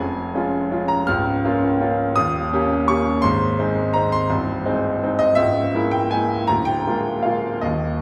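A brilliant, woody upright piano plays alone and up front with polished, long-sustaining tone throughout this graceful, sparkling 8-second fragment of a classical waltz in 3/4, moving with rubato at 147-176 BPM through chords from Db/F and Eb7 to Ab at 3.2 seconds and on to Bb7/D, all bathed in the wet reverb of a recital hall heard from further back in the room.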